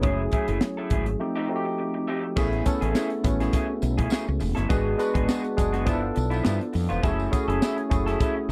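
Upbeat and urban, this polished 1980s jazz-funk pop excerpt at 103 BPM swings lightly in 4/4, with a barky, lightly overdriven tine electric piano carrying the F#m9 and F9 chords through chorus, a slightly broken-up guitar riff from a small old amp, a woody, round fretless bass up front, and a crisp fusion kit with a high-tuned snare and punchy kick, with a break arriving at 1.2 seconds before the Amaj7 passage at 2.4 seconds brings in a jingly tambourine in the background of a dry, close 1970s-style studio sound.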